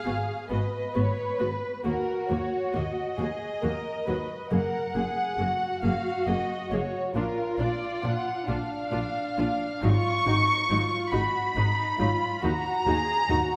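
This is a cinematic, emotional film score for muted string orchestra, sorrowful and bittersweet, moving at a slow 45 BPM in a rubato 6/8 and set in G# dorian. It is a short fragment of a longer piece, lasting about 13.6 seconds. A section of violins played con sordino carries the melody up front, veiled and dark with light vibrato and a smooth top, while a second violin section plays a lower second line with a softer attack. Violas fill the middle with a close, warm accompaniment, and cellos sit in the background beside a lush double bass section to anchor the low end. The harmony drifts from G#m7 through D#m, F#add9 and A# before returning to G#m7 and D#m. A wet scoring stage reverb surrounds the strings, giving the hushed ensemble a spacious, mournful glow.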